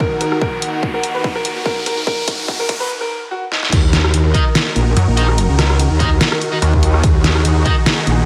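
Light digital ambience frames this menacing, aggressive stretch of heavy wobble dubstep at 145 BPM in Eb minor with a half-time feel. A brilliant grand piano melody with delay, huge phased supersaw chords carrying sidechain pumping and vintage 12-bit grit, a warbling lo-fi pad in the background, an electronic riser, a punchy kick and a deep-snared dubstep kit build toward a break at 2.9 s, and then the drop at 3.7 s unleashes an up-front metallic FM wobble bass, scooped distorted electric guitar stabs from 4.3 s and a growling, detuned saw bass.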